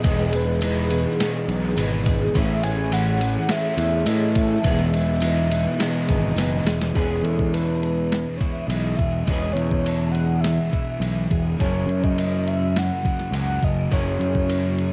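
A steady, straight 4/4 pulse at 104 BPM comes from a detuned 8-bit drum machine, whose thumpy kick, medium-tuned snare and ride cymbal sit up front with a tape-softened, sampler-style character. A growling, overdriven fingered bass also sits forward in the mix. This short cut from a longer shoegaze and dream pop piece in E major feels blissful and dreamy, moving through Emaj7 and Amaj7 before a drum fill at 6.4 seconds leads into a passage on E6 and F#7. Above the groove, a round, horn-like synth lead carries the melody with a soft attack, sustained notes, vibrato and a filter sweep, colored by chorus, plate reverb and analog delay. In the background, a bright, shimmering twelve-string acoustic guitar plays octave-doubled arpeggios through ensemble chorus, tape, plate reverb and delay. An electric guitar through a small old amp adds a slightly broken-up riff with reverse reverb, a dark, thick fuzz guitar grinds out a low riff behind it, and a very quiet, jingly tambourine appears from 0.6 to 6.5 seconds in this lightly reverberant home cassette recording.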